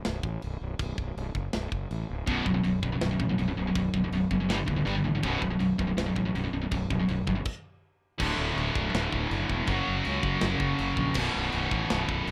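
Heavy and epic, this heavy metal excerpt drives at 162 BPM in B minor, cut from a longer piece and captured in a rough home demo mix with light reverb. A tight, acoustic drum kit opens the track in a studio room, its bright cymbals, medium-tuned snare, china and crash riding over a tight kick. Growly fuzz bass, fingered and overdriven, joins almost at once and sits up front. The picked, double-tracked guitar riff arrives at 2.3 seconds with a bright, distorted edge, moving through B5, G5 and back before a brief stop breaks the momentum. A new passage begins at 8.2 seconds, moving from D5 through F#5 and returning to B5.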